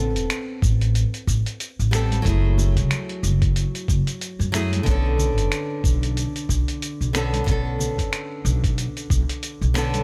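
Bright, fingerpicked nylon-string guitar with digital delay and a woody, up-front pizzicato upright bass open this wistful sunset chillout excerpt over minor ninth chords and a swung sixteenth feel, joined at 0.2 seconds by a gritty, tape-warm sampler-style soul kit of finger snaps, hi-hat and shaker, then at 0.6 seconds by a compressed, thumpy electronic kick, and at 2.1 seconds by very quiet, ringing congas played with soft hands in a small room.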